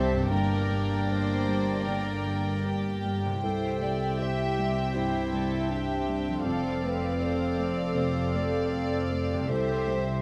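From the opening moment, this moving, hopeful cinematic excerpt unfolds in a flexible rubato, with a sul tasto violin section carrying the melody above a second, floating violin line and a dark, smooth-topped solo clarinet, while a soft, felt-muted upright piano with audible action noise sits in the background, a distant viola section adds accompaniment, a very quiet, ringing fingerpicked concert harp plays arpeggios, and cello and double bass sections anchor the bass through chords of Gm, C6 and F6, captured with close, detailed microphones in a moderate scoring-stage reverb.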